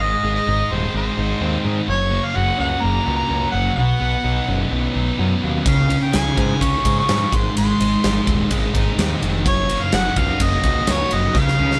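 A mellow, vintage-toned harmonica carries the solo melody in this driving, confident classic rock excerpt, its scooped notes and light vibrato trailed by tape echo. Beneath it, a sludgy, dark, double-tracked guitar riff sits up front alongside a growling overdriven picked bass, moving through chords like Ab, Gb, Badd9 and Db. A huge arena drum kit with a punchy kick and bright cymbals joins at 5.7 seconds and closes with a fill at 11.4 seconds, the whole band sounding as if it is playing live in one room under light reverb.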